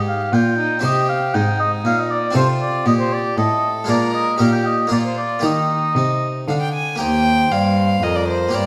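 A distant oboe carries the melody with light vibrato in this introspective, solemn baroque-style sonata movement in Eb major, moving at 118 BPM in 3/4 and entering at 0.1 seconds. A close, gut-strung violin plays the second line, while a brilliant, plucked harpsichord with octave strings supplies the accompaniment and a reedy period-style cello sits up front on the bass. The whole performance is set in a roomy recital hall, and the music turns to a new section at 7.0 seconds before this fragment of a longer piece breaks off.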